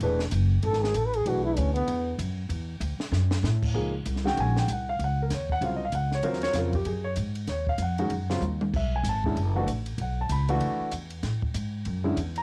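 A home cassette recording in a small booth with moderate, short ambience gives this modal jazz excerpt an intimate, slightly hazy sound, and the piano, trombone and drums carry the tape's grain. The mood is searching and hypnotic, swinging in 4/4 at a brisk 192 BPM and hovering on suspended ninth chords that move from E9sus4 to Ab9sus4 at 3.8 seconds and back to E9sus4. Up front, a breathy, mellow trombone plays a short, whispered solo phrase with a soft attack from 0.6 to 2.2 seconds. Beneath it, a woody, growly pizzicato upright bass sits low and forward, while a grand piano with short sustain supplies close accompaniment throughout. A compact cocktail drum kit with a high-tuned snare and a punchy kick keeps time on ride, hi-hat, crash and toms, adding two brief fills along the way.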